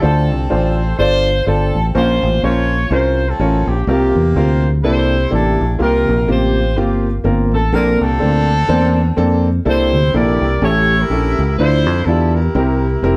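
A tight, up-front horn section carries the melody with pop-style vibrato, over a grand piano whose boxy, intimate tone lets its action noise come through. A dark, round, punchy fingered electric bass sits forward in the mix, giving this swung, jubilant gospel passage a soulful drive. The three parts play together throughout the 13.2-second excerpt, captured live in one studio room with moderate ambience.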